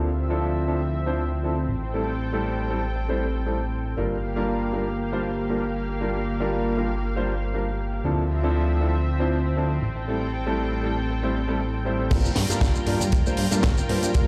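Heard through a big sound system in a bare room with large studio reverb, this groovy, sleek nu-disco passage from a longer piece sets a natural-toned baby grand piano and a fat, nasal, saturated analog bass pumping beneath a lush, warbling vintage unison pad that carries a filter sweep, while a dry funk kit with bright cymbals and a high-tuned snare plays through low-pass filtering until a tight, up-front kick lands with the drop at 12.1 seconds and ringing congas flicker in the background at 13.0 seconds.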